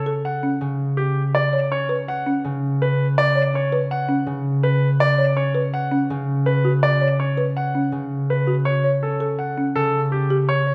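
A brilliant, polished concert grand piano sits up front with the melody in this hypnotic, propulsive stretch of minimalist classical pattern music, moving at 164 BPM in a straight 5/4. Beneath it, a ringing, thumb-plucked concert harp holds the low accompaniment, while a woody, rustic marimba with medium mallets joins at 0.1 seconds with arpeggios that carry a boxy, small-room character. The harmony rests on A, shifts to Bsus2 at 1.3 seconds, and returns to A at 8.7 seconds, all set in a moderate scoring-stage reverb with a softened top end.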